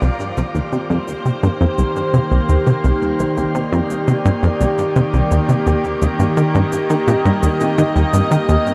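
Ambient, sequencer-driven space music in C minor at 85 BPM, this short cut from a longer piece feels expansive and cosmic, moving from a Cm7 chord to Eb at 5.7 seconds. An evolving wavetable pad holds sustained chords up front, its detuned unison tones morphing slowly under chorus and built-in reverb. A punchy, funky analog bass drives the piece with a wave-folded riff whose fast attack and decaying filter pluck sit forward in the mix, trailed by delay. Entering at 0.2 seconds, a warbly, dusty pluck traces very quiet, lo-fi arpeggios with a dark filter sweep and chorus. Tape-warm electronic shaker and toms fade in throughout, faint and echoed by delay, while a wet shimmer reverb with a 7.4-second tail wraps the whole sound in a vast, glowing space.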